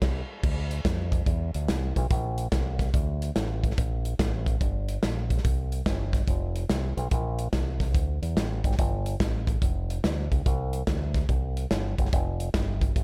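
A bright, direct fingered electric bass run through an envelope filter sits up front in this hopeful, reverent stretch of uptempo gospel, moving between F1 and F2 at 144 BPM in 4/4 with a 65% swing on the eighths. An acoustic studio drum kit, recorded in a small room with a medium-tuned snare, tight kick, hi-hat and crash cymbal, is equally close and plays with the bass from 0.0 to 13.0 seconds. A band accent opens the passage in its first 0.4 seconds, and the mix carries a light reverb and tuning to A4 = 439 Hz.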